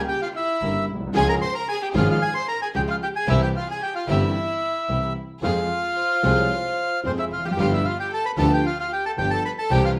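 A dark, boxy concert grand piano, lush bowed string stabs in the background and a clear, focused double bass open this passionate, tense tango excerpt at 112 BPM with a rubato feel, joined at once by an up-front, reedy bandoneon melody and a soft, intimate sul tasto violin section, while a metallic, ringing vibraphone adds a brief second line at 6.0 s, all bathed in a large, wet studio reverb.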